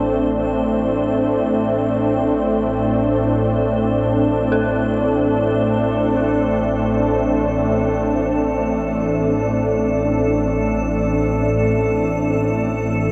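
Dark and ominous, this free-time dark ambient drone in A minor holds on a single A minor chord. An organ-like drone with a detuned warble sits up front beneath a sweeping, resonant sawtooth pad that fades in and evolves through a filter swell. An icy, crystalline glass pad shimmers above, while a dark detuned synth bell fades in with eerie, inharmonic arpeggios in the background, all bathed in a huge, wet reverb and the warbly pitch drift of worn cassette tape.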